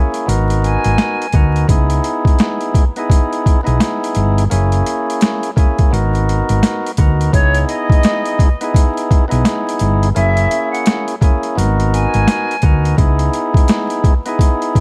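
Swung sixteenths at 85 BPM drive this gritty, tough boom-bap hip-hop excerpt in C# dorian, where a compressed, pitched-down sampler-style drum kit with a thumpy kick and high-tuned snare sits up front beside a dark, round hollow-body electric bass and a lightly overdriven tonewheel organ with key click and third harmonic percussion, while a breathy, tongued concert flute with slapback echo appears briefly at 0.6 seconds and returns from 7.3 to 12.9 seconds over G#m9, C#m9 and F#9 chords and a bed of vinyl crackle.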